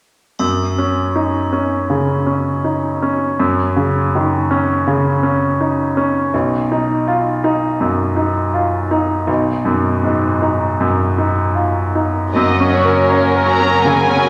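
Bathed in the wet reverb of a scoring stage, this hopeful, uplifting cinematic passage opens with a brilliant, up-front grand piano and a brief touch of close, dry triangle; then at 12.3 seconds a soft-edged string orchestra blooms in, with a dark, intimate violin section carrying the melody from 12.4 seconds over a floating second violin line, distant violas, a very quiet cello section, background double basses and a ringing, thumb-plucked concert harp playing arpeggios.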